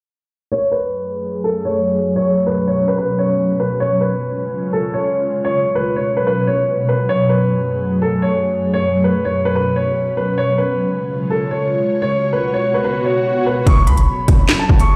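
A dark, boxy concert grand piano carries the melody of this menacing drill excerpt from 0.5 seconds. Its mellow, long-sustaining notes sit up front through a low-pass filter and delay, while a filter sweep runs through the whole first section. Behind it, an ethereal, airy pad holds sustained chords, its detuned unison layers softened by ensemble chorus, phaser and built-in reverb. The harmony, in F# harmonic minor at 146 BPM with a half-time feel, circles through F#madd9, Bsus2 and C#. An electronic swell enters at 12.5 seconds. At 13.7 seconds the beat arrives: a punchy, heavy 808-style bass and a drill kit with a hard-clipped kick, sharp snare, crisp hats and handclaps, all up front, with the drums carrying the ring of a large room. The whole piece sounds as if it were played over a big sound system in a bare stone room.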